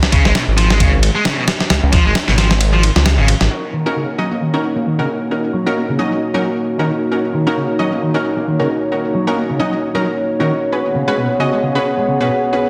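A gritty, sampler-style soul drum kit opens this funky, swaggering breakbeat excerpt in Eb minor at 133 BPM, swinging its 16ths with a thumpy kick, ride cymbal and a medium-tuned snare that carries soft clipping, its tape-warm sound re-recorded in a large room and set up front. A tight, bright distorted guitar riff enters almost at once and runs through nearly the whole clip, filtered and echoed by digital delay. A thick, swirling detuned saw bass joins just after, up front with its phaser, and the kick drops out at 2.6 seconds before the drums and bass stop at 3.5 seconds. From there a deep, moody analog pad holds sustained chords, nasal and dark with chorus and a sidechain pump, while a bold, punchy orchestra-hit-style synth stab cuts in with a layered, full-bodied attack, ring modulation and a filter sweep. The harmony moves from Ebm7 to Db7sus4 under a moderate lush hall reverb, all pressed into a dense, heavily limited modern master.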